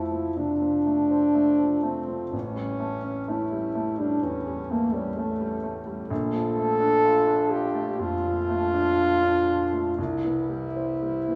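A French horn and a concert grand piano begin together, opening this tender romantic classical duo in F major, a brief 11.4-second passage taken from a longer piece. The horn carries the melody in a warm, smooth-topped classical voice, set up front as the solo part between G3 and A4. Beneath it the piano accompanies from A1 to F4, sounding intimate and polished, with deep bass, long sustain and audible action noise that brings it close and present. The tempo sits around 57-65 BPM in 4/4 with a gentle rubato, as the harmony moves from F to A7, then to Bbmaj7 at 6.1 seconds and to C at 10.0 seconds. A wet recital hall reverb with a 1.9-second decay, blended with small room ambience, surrounds the pair.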